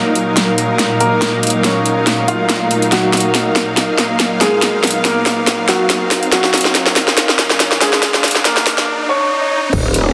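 A dense, heavily limited mix bathed in plate reverb carries this heavy, chaotic wobble dubstep excerpt in Eb minor at 141 BPM, set in a half-time feel with a light swing, and the passage builds up over an Eb minor chord until 9.7 s. A warm grand piano plays the melody through dub echo while a lush, detuned supersaw pad and an intimate, sul tasto chamber string section pump under sidechain, a very quiet riser and swell sit beneath, and the up-front dubstep kit plays a drum fill with a huge snare and metallic hats until 8.9 s. At 9.7 s the impact arrives as a distorted electronic kick and a growling, saturated wobble bass on a low Eb.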